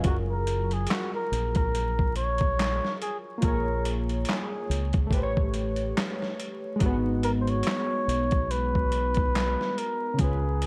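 Lo-fi hip hop at 71 BPM with a lazy 16th-note swing, this mellow, nostalgic clip pairs a breathy flugelhorn melody, touched by light vibrato, low-pass filtering and analog delay, with gritty, pitched-down boom bap drums (thumpy kick, snare, hi-hat and handclaps) and a round, punchy fingered electric bass up front, while detuned analog keys with chorus and a filter sweep move through F#maj9, A#m7, A9 and G#m7 in a dry, echo-heavy mix dusted with vinyl crackle.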